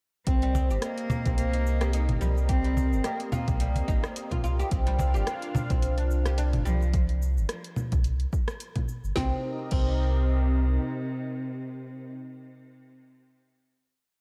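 A swung, earthy organic downtempo groove of punchy electronic kick and a layered kit with woody snare, dark closed hats, rim clicks, cabasa, low congas and crash, joined by a snappy, close cajon until about 5.7 seconds, carries a deep, round sub bass riff with sidechain pumping, a plectrum-plucked fretless oud repeating a step-sequenced arpeggio through delay, a smooth, detuned sawtooth pad with chorus and sidechain pumping, and a boxy bowed cello with vibrato playing delayed call phrases, before the piece settles onto a held final chord from 9.2 seconds.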